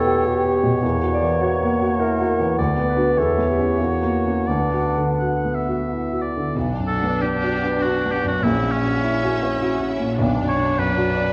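In a rubato 3/4 that moves between 83 and 106 BPM, this brooding, passionate classical excerpt in B minor sets a warm, polished grand piano up front on the melody, with a clear oboe carrying a second line throughout while a distant clarinet, an airy, hollow flute and a mellow bassoon fill in the background until about 6 seconds. At 6.6 seconds, a bowed string ensemble takes over the accompaniment: focused violins share the melody while very quiet, lush violins add a second line, focused violas sit close, and distant cellos hold the bass until 10.7 seconds, all under vibrato. A wet scoring-stage reverb surrounds the ensemble, and worn old cassette tape lends the whole recording a warbling pitch drift.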